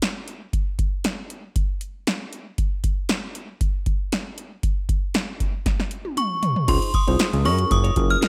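Set in a digital ambience, this feel-good, smooth early-eighties boogie funk excerpt at 117 BPM in Db major opens with an up-front, dry electro analog drum machine, its deep kick and punchy snare carrying gated reverb, and during a drum fill a bright, ringing, inharmonic FM bell melody with chorus arrives at 6.2 seconds, before a fat, detuned sawtooth analog bass, a worn, slightly out-of-tune tine electric piano with light overdrive and a clean, compressed electric guitar riff with lush chorus join at 6.7 seconds over Dbmaj9 and Gbmaj7 chords.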